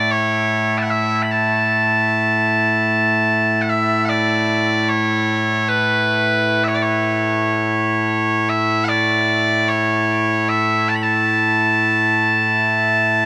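Loud, piercing solo bagpipes sound continuously up front in this short excerpt of a proud and ceremonial Scottish traditional pipe tune in three-four time, ringing into a huge ambient reverb as one phrase is heard and then begins again at 3.7 seconds.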